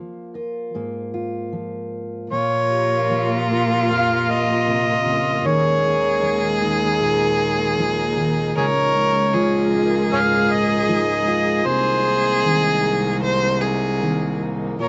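Hopeful and nostalgic, this acoustic folk-pop ballad at 77 BPM in Ab major opens with a full-bodied fingerpicked jumbo steel-string guitar and metallic, ringing vibraphone arpeggios played with medium mallets in the background, then at 2.3 seconds a gritty, amplified harmonica takes the up-front jazz-style melody with tongue slaps and scooped notes, joined by a rich, focused bowed violin on a second line, a very quiet, lush studio string section holding sustained chords, and an expressive cello bass with portamento, in a dry outdoor recording with a dark top.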